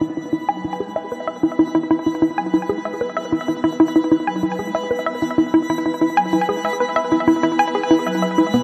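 Cosmic and mysterious, this 8.6-second excerpt of ambient, sequencer-driven space music moves at 95 BPM in a straight 4/4 over an E chord, with an up-front, hollow, bouncy square-wave pluck riff carrying chorus, delay, shimmer reverb and a filter sweep, while a dark, metallic soft-mallet vibraphone with fast motor vibrato fades in on quiet delayed arpeggios and a sparkling granular texture with octave-up shimmer fades in behind them, all within a huge ambient reverb.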